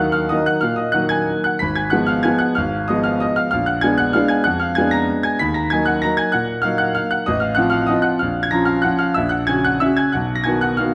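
A clear, smooth grand piano with a vintage character and long sustain sits up front in this bittersweet, wistful solo classical waltz in Eb minor, moving at 190 BPM in 3/4 with uneven, rubato beats and reaching from Ab1 to Cb7 in a short passage cut from a longer piece, all set in a moderate recital-hall reverb with a dark production.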